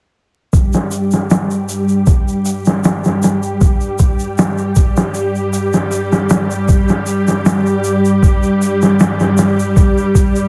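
A straight 4/4 groove at 78 BPM sets a smoky, hypnotic trip hop mood in this short cut from a longer piece. The sampler-style drum kit sits up front from 0.5 s, its thumpy kick, medium-tuned snare and hi-hat pitched down, compressed and gritty, with a low-pass filter dulling the hats, kick, snare and the small room they were re-recorded in. A string machine voicing cellos holds sustained chords between G3 and G4, its soft-attack sawtooth tone thickened by a sub octave, an ensemble chorus and vintage 12-bit sampler grit, with long releases and a full, mellow character. A close, dry egg shaker sits quietly beneath the drums, and the drums drop out at 10.3 s just before the strings and shaker end at 10.5 s. The whole mix carries light reverb, vinyl crackle and a heavily compressed, radio-like sound.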